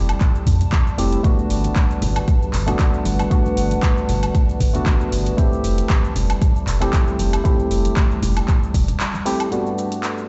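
A swung 116 BPM deep house groove drives this sunny excerpt, with a deep, tape-toned electronic kick up front, overdriven handclaps, metallic hi-hats, shaker and woodblock, and low-tuned, soft-handed congas in the background, all under a round sine sub bass with tube saturation, hollow, nasal organ stabs with chorus and delay, and a warbling, nostalgic lo-fi pad, with the bass, stabs and pad pumping against the kick as the chords move between Fmaj9 and Gmaj9, until a band accent at 9.0 seconds opens a short break and a smooth, detuned analog pad enters at 9.5 seconds, all heard through a big sound system in a bare room with large studio reverb and a dull, rolled-off top.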